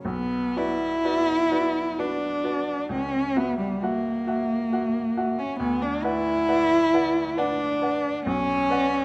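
Close, detailed microphones in a moderate recital-hall reverb frame this yearning, elegiac excerpt of romantic classical music in B minor, a rubato 3/4 at 67 BPM in which a dark, expressive bowed cello, up front, sings the melody with vibrato and portamento from 0.1 s, while a bright, brilliant baby grand piano, also up front, accompanies through Bm, F#7/C# and Bm/D before returning to Bm.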